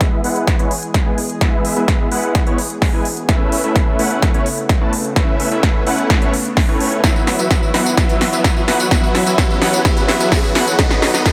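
Lightly reverberant and polished, this triumphant, uplifting festival progressive house build-up puts a tape-warm electronic kick and huge, detuned sawtooth supersaw chords up front, the supersaw riff pumping with sidechain through a low-pass filter sweep and tape echo, while an overdriven big-room kit with a punchy snare, crisp hi-hat and tambourine plays a drum fill, a lush, slow-attack unison pad with chorus sits in the background, a fat, saturated analog bass stays very quiet, and a very quiet riser enters at 4.8 s.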